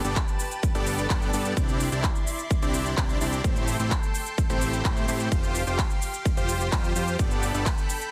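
A crisp big-room kit of cabasa, handclaps, hi-hat and ride cymbal opens this straight 4/4 festival progressive house cut at 128 BPM in C major, and a punchy, overdriven electronic kick drives it from a split second later, while a huge detuned supersaw riff with delay, a fat, nasal analog bass and a lush, chorused pad with vintage 12-bit grit all pump to the sidechain through anthemic, uplifting chords moving from Gadd9 to Cadd9, Am7 and Fsus2 in a dense, heavily limited modern master.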